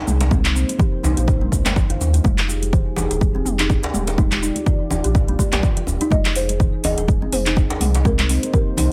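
A swung sixteenth-note groove in four drives this hypnotic, spiritual afro house excerpt, anchored by a punchy electronic kick placed up front, while a layered house kit adds metallic hi-hats, handclaps, cabasa and toms. Acoustic hand drums fill out the pulse: bright, close congas tucked into the background and a deep djembe struck with hard hands in a live room. Beneath them, a round sine sub bass holds the low end, pumping with the sidechain alongside a moody, detuned sawtooth pad whose slow-attack chords carry chorus and move through minor seventh and ninth colours. A woody, hollow kalimba plucks arpeggios through tape echo. At 6.1 s a mellow, rustic marimba played with soft mallets enters with a melody, also treated with tape echo, and the whole track sits in a digital ambience.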